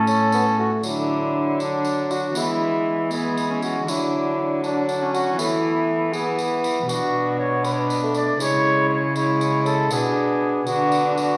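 A reverberant recital-hall sound, like that of a church or concert hall, surrounds this short fragment of a renaissance-style consort dance in 6/8, courtly and stately in mood. A distant, roomy cornet carries the melody between D4 and D5 with a soft attack and light vibrato. Beneath it, a close, nasal viola with an airy bow and gut-string tone plays a second line. A rich, reedy cello in period style holds the bass, and a mellow bassoon adds accompaniment from 0.1 s. A jingly, vintage tambourine sits quietly in the blend, its band-limited ring tinged warm. The harmony moves from A through D and E, back to D, then to Esus4 and E5, before turning to Bm, C#m and back to Bm as the passage breaks off at 11.4 s.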